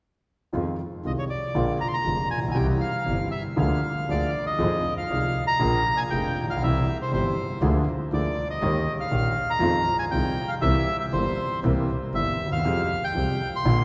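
A reedy, dark bandoneon carries the melody in this passionate, sultry tango excerpt, close-miked, dry and full, sitting up front from 1.1 seconds onward. A warm concert grand piano provides the accompaniment from 0.5 seconds, intimate and natural with audible action noise and deep bass, also placed up front. A single bowed double bass holds the low end, clear and biting with an earthy tone and light vibrato. The music moves in 4/4 at around 119 BPM with a rubato feel, in F minor, cycling through Fm7, Bb7 and C before a second section at 4.6 seconds adds Eb7 and C7 and settles on Fmadd9. The whole ensemble is heard in a church or concert hall, wrapped in a wet cathedral reverb with a 5.2-second decay.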